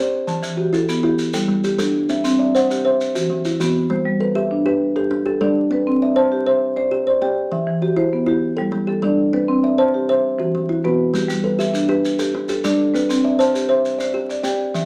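Soft-mallet marimba, round and mellow with rosewood bars, and an up-front thumb-plucked kalimba, hollow and woody, weave arpeggios through a hypnotic southern African traditional mbira-style interlocking cycle in 12/8 at 133 BPM in G major, moving through Em, G, C and E5 chords, while grainy maracas come in at 0.3 s, drop out, and return at 11.2 s, the whole set in a moderate large-studio reverb with vinyl crackle in this warm fragment of a longer piece.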